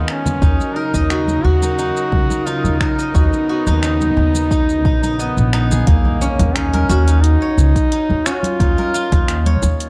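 A straight 4/4 pulse at 88 BPM anchors this hypnotic, mystical piece of organic downtempo, cut from a longer work. A deep, tape-softened electronic kick and a layered deep house kit of finger snaps, hi-hat and shaker, both re-recorded in a small room, play alongside soft-handed congas that ring in the background. Up front, a woody, growly pizzicato upright bass carries tube saturation and sidechain pumping, while a fingerpicked steel-string zither spins silvery arpeggios through a digital delay. A clear solo duduk sings a folk-style melody full of scooped notes, trailed by tape echo, over earthy, bowed chamber strings that hold smooth-topped chords with light vibrato until 5.9 seconds. At that point a very quiet electronic impact appears and lingers to 8.6 seconds as the harmony moves from Ebm7 and Bmaj9/D# toward Gb6/Eb and Db69, all within a dark, warm production and light studio reverb.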